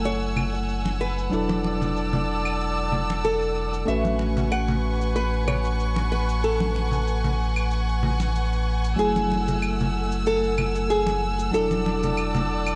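Blissful and smooth, this sunset chillout fragment sets a fingerpicked nylon-string guitar melody over a clean tine electric piano through a combo amp, both trailed by analog delay, with dark, bowed chamber strings holding soft sustained chords, a deep, round sub bass up front, and bright, damped congas with dub echo and overdriven, filtered cabasa and claves sitting in the background of an echo-heavy mix with spring reverb and small-room ambience.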